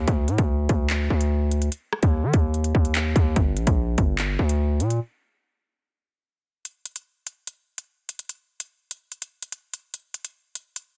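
Drill hip hop at 146 BPM in a half-time feel and G minor, ominous and cold, this cut from a longer piece sets a heavy, saturated 808-style bass with a noisy edge up front until 5.0 seconds, then breaks until 6.7 seconds while the drill drum kit of hard-clipped kick, crisp hi-hats, handclaps and rim clicks carries on with 12-bit sampler grit through 10.9 seconds, all in a dry, dense, heavily limited master.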